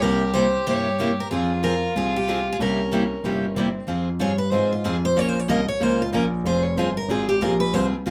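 This fiery, swinging jazz manouche excerpt in F minor at 186 BPM opens with the whole ensemble at once in a moderate club-sized room. An up-front concert steel-string guitar with fresh strings and audible finger squeak carries the picked melody, and a single violin with an airy bow and light vibrato adds an earthy second line beneath it. Two picked steel-string guitars supply the accompaniment: a boxy parlour guitar and a full-bodied jumbo set further back. A dark, mellow baby grand piano with long sustain holds down the bass over a C7b9 to Fm progression. The violin drops out at 3.9 seconds, where a steel-string guitar solo begins over Fm and Bbm and runs until 8.1 seconds.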